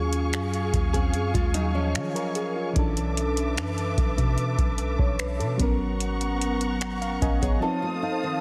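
A mellow, chorused FM electric piano and veiled, con sordino strings with sidechain pumping open this moody, longing contemporary R&B excerpt at 74 BPM, joined at once by a round 808-style bass and a booming analog drum machine with a deep kick, metallic hats, finger snaps and a softly clipped snare. Fingerpicked nylon-string guitar arpeggios with tape echo and audible finger squeak enter at 0.9 seconds as the chords move from Ebm11 through Bm11 and Abm11. Bass and drums stop at 7.6 seconds on an F7, leaving the electric piano's closing fill, the strings and the guitar in light digital ambience within a dense, heavily limited master.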